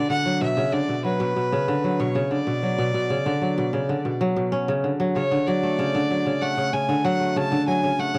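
Crisp, ringing fingerpicked kora arpeggios carry this hopeful folktronica fragment from a longer piece, while a single bowed violin sings an earthy, clear melody with light vibrato above them, both up front in a dry, close 1970s-style studio sound as the harmony moves from Bmadd9 to Dmaj7 at 5.2 seconds.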